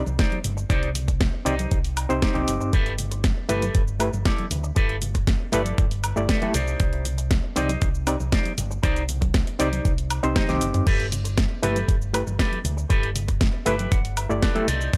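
Groovy and sunny, this nu-disco excerpt moves at 118 BPM in G major, with an overdriven, barky reed electric piano up front, its fast tremolo and analog delay carrying the chords over a twangy, scooped envelope-filtered guitar riff treated with lush chorus. A dark, round picked bass with its own envelope filter sits under a thumpy, overdriven electronic kick, while an electronic house kit with a cracking, tape-warm snare, hi-hat, shaker, woodblock, toms and crash adds layers, and soft-handed, damped congas stay in the background. The dry, gritty mix features a drum fill at 10.4 seconds and a clean electric guitar fill from 13.4 seconds.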